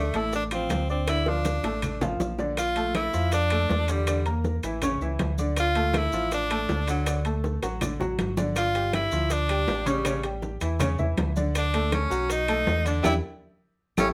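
An edgy, forceful tenor saxophone leads this fiery, passionate salsa excerpt in D minor at 160 BPM, its punchy, vibrato-laden line sitting up front over a clear, slightly worn concert grand piano and a dark, round fingered electric bass. Congas, tight high-tuned bongos, ringing timbales and grainy maracas stay in the background, with woody claves entering very quietly at 0.5 seconds, all within a moderate studio reverb. Drum fills punctuate the groove as the harmony moves from Dm through Bbmaj7, Gsus2 and A7 toward Em7, where a band accent lands at 13.0 seconds.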